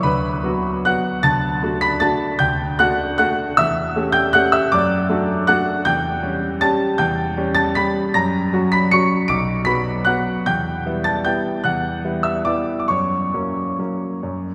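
A classical piano waltz in B minor and 3/4, this nostalgic, bittersweet passage moves with a rubato feel somewhere between 130 and 167 BPM, tuned slightly high at A4 = 441 Hz. A solo grand piano with a smooth, vintage tone sits up front, spanning B1 to D7 as its harmony moves from Bm/D through D, A7/E and C#dim/E to F# at 8.1 seconds, then Bm, Em and a final F# at 12.9 seconds. The piano is bathed in a wet cathedral reverb with a 4.4-second decay, giving the 14.5-second excerpt the resonance of a church or concert hall.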